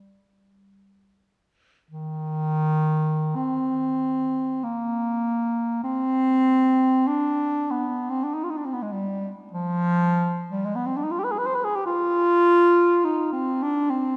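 Classical solo piece for unaccompanied bass clarinet in C minor, moving freely with rubato at a slow 34-53 BPM in a mournful, yearning mood. The mellow bass clarinet sits up front with a smooth top, ranging from Eb3 to C5, and a brief opening passage gives way to a longer second section from 1.9 seconds. A wet church reverb with a 2.5-second decay surrounds the line, and the recording is cut from a longer piece.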